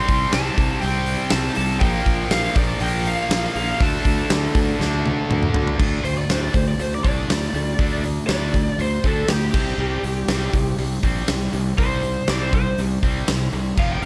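A huge, punchy arena drum kit sits up front in this heavy, aggressive hard rock excerpt in D minor at 120 BPM, its bright cymbals, medium-tuned snare, toms and kick driving a straight 4/4 beneath a growly, fuzz-soaked fingered bass. Two tight, distorted guitars pick out the riff, one of them set back in the background and dropping out at 5.8 seconds, while a dark, lo-fi lead guitar through a small cranked amp carries the melody from the start over harmony moving through C5, Bb5 and D5. After a drum fill from 4.8 seconds, that overdriven lead breaks into a solo from 5.8 to 14.1 seconds as the harmony shifts from D5 to C5, all bathed in studio reverb.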